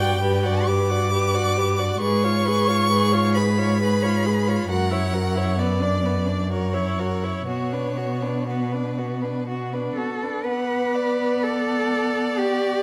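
Classical music for string quartet: a slow, yearning and melancholic romantic movement in B minor, taken from a longer piece, moving in a rubato 3/4 at roughly 60-69 BPM. A focused, close first violin sings the melody with vibrato above a smooth, even second violin line and a rich viola accompaniment, while the expressive cello sits up front and louder than the others, carrying the bass with soft attacks and portamento. A recital hall reverb surrounds the quartet as the harmony moves from Gmaj7 through C#7/G# and F#7 to settle on B minor at 7.5 seconds, before a new passage begins at 10.5 seconds.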